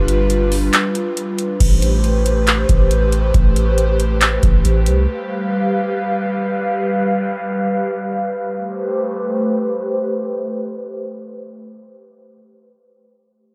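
Atmospheric cloud-rap hip hop with a hazy, ethereal mood, moving at 138 BPM in 4/4 with a half-time feel in A minor. An airy, breathy pad holds sustained chords through the whole clip, its detuned sawtooth and triangle tones layered with noise, shaped by chorus, a low-pass filter and sidechain pumping, with slow attacks and long releases. Up front beneath it, a soft, round 808-style bass and a booming analog drum machine with a deep kick, metallic hi-hats, handclaps and crash cymbal both stop at about 5 seconds, leaving the pad alone for the rest. The harmony moves between G7 and Am9, with a break from 0.7 to 1.6 seconds. Light reverb softens the sound of this fragment, which is cut from a longer piece.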